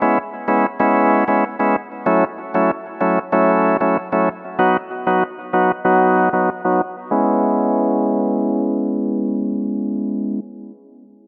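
Bouncy and sultry, this dancehall fragment in C# minor moves at 95 BPM in a straight 4/4, with a reedy, bright tonewheel organ playing alone up front throughout its 10.4 seconds. The clean organ sits between F#3 and F#4, shaded by a low-pass filter and tape echo, and a filter sweep colors it from 2.1 to 7.1 seconds as the chords move from C#m7 to F#m7 and B before returning to C#m7 at 7.1 seconds. Light reverb and the worn, warbling pitch drift of old cassette tape give the short cut from a longer piece a hazy, aged character, tuned slightly flat to A4 = 439 Hz.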